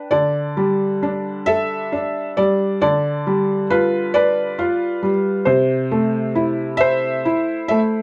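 Tender and gentle, this short excerpt from a children's lullaby drifts in a rubato 6/8 at about 45 dotted-quarter beats per minute, tuned to A4 = 439 Hz. A solo felt-muted upright piano, soft and mellow with a thin, intimate felt tone, sits up front and moves through Dsus4, G7/D and C6 across a range from C3 to G5. A moderate studio ambience with a half-second decay lends the room a close, hushed air.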